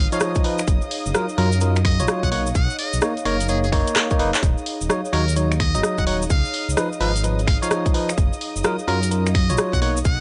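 A buzzy, close-miked muted trumpet carries the soulful melody with light vibrato and an analog delay, over a skippy two-step UK garage groove at 128 BPM with a 64% sixteenth-note swing. A bell-like tine electric piano stabs up front through chords moving from Db9 to Gbmaj7 and Ebm7, while a deep, rumbling detuned saw bass anchors the low end and a warbling, nostalgic tape-like pad and a distant, woody violin section pump softly in the background. A dry analog drum machine of finger snaps, handclaps, hi-hat and rim click joins a grainy cabasa and a tight layered kick that enters at 0.4 s, with a drum fill at 4.0 s, all caught in a gritty cassette sound with a small room reverb.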